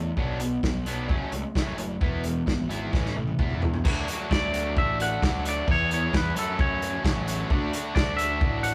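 This short indie rock excerpt opens with a bright, double-tracked distorted electric guitar riff and a punchy, fuzz-laden picked bass, joined a moment later by a loose, acoustic drum kit recorded in a small room with a tight kick, medium-tuned snare and a warm, rolled-off top. The tempo is a straight 131 BPM in 4/4, and the mood feels wistful yet carefree as the chords move through Bm, F#m, E and A. A drum fill from 2.9 to 3.9 seconds leads into a second section built on D, E and F#m. At 4.3 seconds a clean, twangy electric guitar enters with a fingered melody bathed in spring reverb, sitting in a higher register above the riff. The drums and riff guitar stay up front in a rough rehearsal-room sound with light reverb, giving the whole passage an unpolished, live-in-the-room charm.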